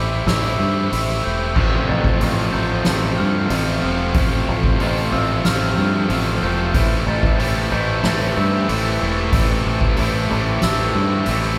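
A live band in one large studio room, with a moderate reverb, carries this cinematic, melancholic post-rock fragment in A minor at 93 BPM, moving from Am7 to Fadd9 and back. A round, punchy fingered bass sits up front beside a soft-mallet drum kit with dark cymbals, a fat snare and a boomy kick, while a bright, picked overdriven guitar plays a riff and a cranked stack guitar, treated with spring reverb, joins with its own riff at 1.6 seconds. Behind them, a mellow, bell-like glockenspiel played with rubber mallets traces arpeggios, and an airy, detuned sawtooth pad holds sustained chords with chorus.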